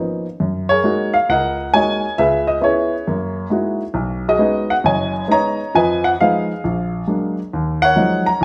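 A warm baby grand piano plays relaxed, sophisticated solo jazz in F# major at 134 BPM with a swung 4/4 feel, its intimate, up-front tone carrying audible action noise and short sustain as it moves from F#69 through C#m7, B69 and Fm7b5 to D#m11 in a moderate stone-room reverb, in this short cut from a longer piece.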